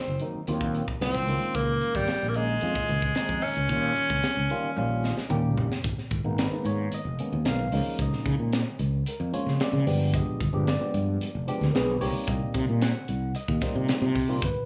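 Captured in a moderate club space with a studio ambience, this short cut from a longer electric jazz fusion piece sounds slick and soaring, with the drums, bass and saxophone all placed up front. An edgy, forceful tenor saxophone carries the melody in a jazz-style solo, with scooped notes and punchy attack set in plate reverb, and it falls silent at 5.3 seconds. Underneath, a growly fretless electric bass, direct and amped with a bright edge, holds down the low end, while a barky tine electric piano played clean through a combo amp and colored by phaser supplies the accompaniment. An acoustic fusion kit in a small, pumping room drives a straight 4/4 feel with a high-tuned snare, punchy kick, hi-hat and toms. Drum and electric piano fills at 4.8 seconds lead into the second section, where the harmony moves from Abmadd9 through Db69 and G7b9 to Cm7.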